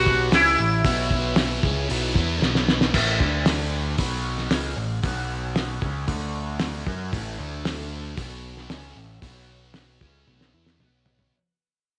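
A buzzing, shimmering sitar opens this trippy, kaleidoscopic psychedelic rock excerpt, its up-front melody ringing with sympathetic strings and a slapback echo before it drops out at 2.4 seconds. Underneath, a thick, double-tracked fuzz guitar plays a bright, distorted riff through a phaser for the whole length, while a picked electric bass sits up front with a warm, direct tone. A cloth-damped drum kit enters almost at once, sounding muffled and gritty, with a fat snare, tight kick and dark cymbals, and it plays a fill from 2.4 to 2.9 seconds as the music moves into its second section. A very quiet string machine adds soft-attack, vintage violin chords with an ensemble chorus, dropping away and then returning at 7.1 seconds. At a straight 114 BPM in 4/4, the harmony circles A, B5 and D5 with a brief C#5, set in a small room with light reverb, and the piece fades out from 2.9 seconds under a closing drum fill.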